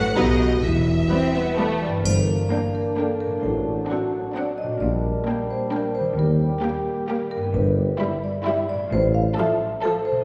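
Quirky and magical, this playful, whimsical film cue in G minor moves at 131 BPM in a straight 3/4, cut from a longer piece. A close-miked, dry marimba carries the melody with a lush, expressive violin section, over ringing fingerpicked harp arpeggios, smooth bowed cello and distant double bass sections on the bass, a shadowy second violin line with portamento, and a focused viola accompaniment in the background. At 2.0 s, as the harmony lands on G minor, warm French horns add soft-attack sustained chords, a smooth-topped solo tuba joins the bass, and a bright triangle sounds briefly, the orchestra sitting in a long scoring-stage reverb heard from further back in the room.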